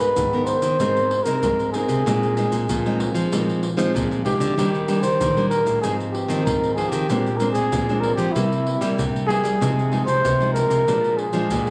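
Captured on a phone in a club with a light reverb, this short cut from a longer samba and choro piece has a lively, sunny mood at 95 BPM in a straight 4/4. A dark, breathy trumpet carries the melody between E4 and C5, close-miked and up front with a soft attack, vibrato and an intimate, whispered jazz-style tone. Beneath it, a fingerpicked nylon-string guitar plays classical-style accompaniment from F2 to Bb4, while a second nylon-string guitar takes the bass line between Ab2 and G3 with a full-bodied, up-front sound. From 0.2 s, maracas, surdo and pandeiro add a tight surdo and hard hand strokes, sitting further back in the live room. The harmony moves from Abmadd9 through Bb9sus4, Ebmaj7 and C7 to a closing Bb7 at 10.9 s, all within a single section that runs to 11.7 s.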